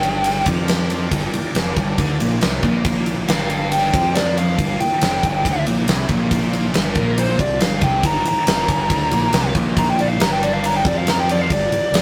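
A straight 4/4 groove drives this gritty, smoky blues rock and southern rock fragment, cut from a longer piece. A huge arena drum kit sits up front with a punchy kick, fat snare and bright ride cymbal in a pumping hall-like room, while a growling fingered electric bass adds an overdriven, punchy low end. A thick, double-tracked fuzz guitar plays the picked riff underneath, and a very quiet overdriven tonewheel organ holds sustained chords with key click, chorus vibrato and a slow rotary speaker. The biting lead guitar flashes for a moment at the start, then returns at 3.3 seconds with a bright, overdriven picked solo that carries the melody through to the end. Light reverb and a rough rehearsal-room sound give the whole performance a raw, live edge.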